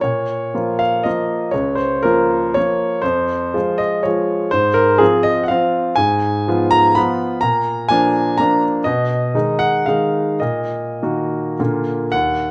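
A moderate large-studio reverb surrounds an up-front, brilliant grand piano whose action noise stays audible and whose notes carry long sustain, in a short passage cut from a longer work. This romantic classical dance in 3/4 and Bb minor moves with free rubato between 97 and 133 BPM, its dotted rhythms giving a capricious, wistful lilt. The solo piano spans Db2 to Cb6, with the harmony moving from Bbm through Fm and Fdim/Ab to a Bb chord at 7.4 seconds, then returning to Bb at 11.6 seconds.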